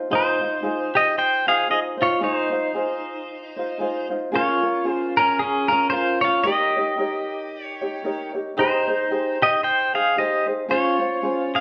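Hawaiian piece at 113 BPM with a relaxed, sunny swing in Ab major, where a clean, twangy electric pedal steel guitar, played with fingerpicks and slide, compressed and shaped by volume swells, carries the melody up front from 0.1 seconds over a light, thumb-plucked acoustic ukulele accompaniment, the two heard as a band playing live in one room within a wet large-studio reverb as the chords move from Ab6 through Bbm7 and Eb7 to Dbmaj7.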